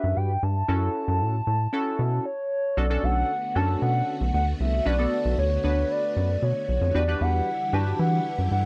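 A hollow, woody synth lead carries the melody from the first moment, its soft square-and-triangle tone given vibrato and chorus, while a punchy polysynth comp and a rubbery, bouncy square bass play beneath it in this late-night funk excerpt. The bass sits up front with a dark, resonant filter pluck that decays, and the comp adds filter sweeps and a chorused sheen over chords that move from Em9 to F#m7. A brief stop at 2.3 seconds clears the air before the music lands on Bm9 at 2.8 seconds. There a string-machine violin section fades in with a slow attack, its shimmering, vintage ensemble chords held quietly behind the lead. The harmony returns to Em9 near the close, and the dry, close sound of a 1970s-style studio keeps every part intimate.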